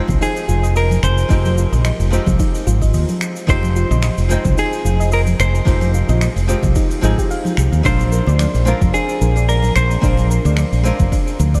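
Wistful and smooth, this brief excerpt of sunset chillout at 110 BPM with a gentle sixteenth-note swing drifts in F dorian from Fm9 to Bb9 at 7.8 seconds, as a clean, compressed electric guitar picks a melody through analog delay until 10.3 seconds over a dark, hollow-body archtop, a round, up-front fretless bass, a punchy layered electronic kick, a vintage brush kit with finger snaps, hi-hat and shaker, hard-hand congas in the background, and a soft, detuned synth pluck tracing arpeggios with chorus and delay, all bathed in a huge dreamy reverb.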